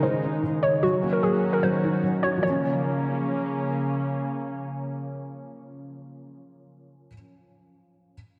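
A dreamy wash of church-like reverb soaks this short hip hop fragment, cut from a longer piece, giving it an eerie, menacing air. At 150 BPM in 4/4 with a half-time feel in Bb minor, the harmony moves from Dbsus2 to Ebm7 before settling on Bbm. Up front, a warbly, dusty pluck carries the melody with a lo-fi blend of square and sawtooth tones, a noise layer and a filter sweep; it has a fast attack and a decaying tail, colored by chorus, phaser and delay, and stops at 3.6 seconds. Beneath it, a felt-muted upright piano plays soft, dark accompaniment with audible action noise, its thick-felt, vintage character touched by ensemble chorus through to 8.2 seconds. A warm analog pad of detuned sawtooth and triangle waves holds sustained chords with a slow attack and long release, its lush chorus lending a warbling shimmer until it ends at 6.4 seconds.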